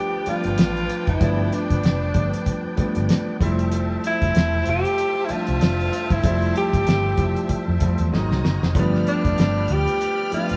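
A breathy, mellow tenor saxophone carries the melody up front with scooped notes and vibrato in this cut from a lush 1970s-style soul tune at 95 BPM, swung on the sixteenths and moving from G7 through Fmaj9 and Ab9 back to G7. A clear concert grand piano supplies accompaniment while a bowed studio string section plays an expressive second line and a fat, lightly overdriven tonewheel organ holds sustained chords in the background through a fast rotary speaker. A round, foam-muted electric bass and a dry, thuddy, cloth-damped drum kit with a tight kick and fat snare join at 0.3 seconds, the drums adding a fill at 8.1 seconds, all captured as a band playing live in a stone room with moderate reverb.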